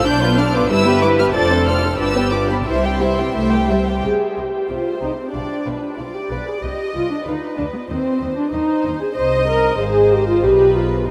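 Cheerful and graceful, this short excerpt from a classical-period movement for string orchestra moves at 93 BPM in 2/4 with a rubato feel, opening in C major before turning to C minor at 4.0 s. The violins carry the melody high above, soft-attacked and floating, while a second violin line sits up front with the same pure, sul tasto tone. Beneath them the violas supply a dark, woody, lush accompaniment with vibrato, the most present voice in the blend. Cellos hold the bass in the background with a warm, floating sound, joined at 0.1 s by double basses that add a deep, close foundation. A huge, echoing reverb surrounds the ensemble, placing it in a vast space, and the harmony passes through diminished and minor colors before settling on a Bdim chord near the end.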